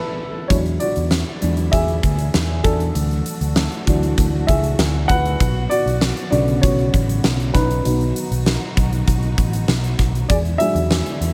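A straight 4/4 pulse at 98 BPM drives this dramatic, piano-driven pop fragment, which opens with a band accent before an up-front, woody upright piano takes the lead from 0.5 seconds. A punchy arena kit with a fat snare and a round, foam-muted picked bass enter together beneath it, while bowed symphonic strings hold lush, vibrato-rich chords in the background. The dry mix moves through E7, Dadd9, Bmadd9 and B before returning to E7 around 10.3 seconds.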